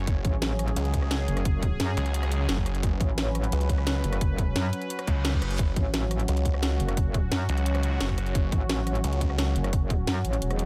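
A dry, close-sounding excerpt of dark, mechanical, futuristic technical drum and bass, where an overdriven tight electronic kick sits up front with a growling, detuned sawtooth bass and a metallic FM wobble bass, joined by a kit of cracking snare, bright hats and rim clicks, while an airy, evolving pad with chorus pumps behind them and a faint reverse cymbal appears in the background at 5.0 seconds.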